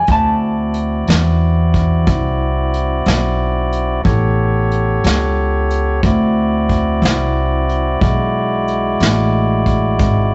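A lightly overdriven tonewheel organ sits up front with clear, sustained chords through a soulful, rollicking slow blues in 12/8, moving from D9 to A9 and back before reaching E9. A woody pizzicato upright bass, also up front, anchors the low end while a vintage brush kit adds punchy kick, medium-tuned snare and hi-hat with a rolled-off top. A dark, clean, fingered electric guitar appears only in the opening 1.1 seconds, and the short cut from a longer piece has the rough, lightly reverberant sound of a small rehearsal room.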